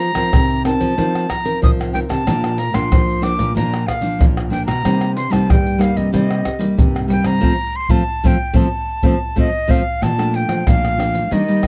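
Samba and choro in a lively, festive mood, this short excerpt from a longer piece features a breathy concert flute carrying the melody in its upper register with a straight tone, a crisp attack and a close-miked presence. Beneath it, a fingerpicked classical nylon-string guitar supplies the accompaniment with fresh strings and the odd finger squeak. A second fingerpicked nylon-string guitar holds down the bass line with a warm, acoustic sound. Tube shaker, pandeiro, tight surdo and tamborim sit up front in a small room, with all four parts playing together from the opening bar. The band hits a shared accent from 7.4 to 10.0 seconds before the music moves into a new section at 10.0 seconds, settling on a major-seventh chord in a dry, close, 1970s-style studio sound.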